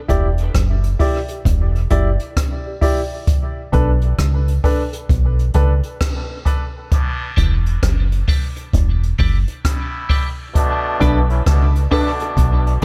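Dub reggae, meditative and heavy, moving at a slow 66 BPM in 4/4 with a swung sixteenth-note feel in E dorian, cut from a longer piece. A deep, dark fingered electric bass sits up front with a round, punchy, foam-muted tone. A jazz kit played with brushes keeps hi-hat, boomy kick and rim clicks in a natural studio room, while a polished baby grand piano plays high-passed stabs that trail off into dub echo. The opening break gives way as a muted trombone section enters at 6.9 seconds with a bright, nasal straight-mute sound and vibrato, followed at 7.4 seconds by a clean, picked electric guitar, compressed and coloured with analog chorus and dub echo. A filter sweep starts at 3.3 seconds over the Em7 to Bm7 changes, and the small room ambience gives the whole mix an echo-heavy character.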